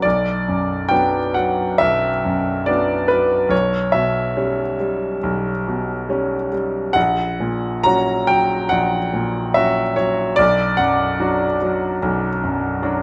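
A clear, intimate grand piano opens this brooding, stormy romantic character piece in B minor, played solo at a rubato 70 BPM across a range from A#1 to A#5, its audible action noise up front under close, detailed microphones in a moderate recital hall reverb, as the harmony moves from Bm through C#m7b5/B and F#/A# back to Bm by 10.4 seconds in this 13-second excerpt cut from a longer piece.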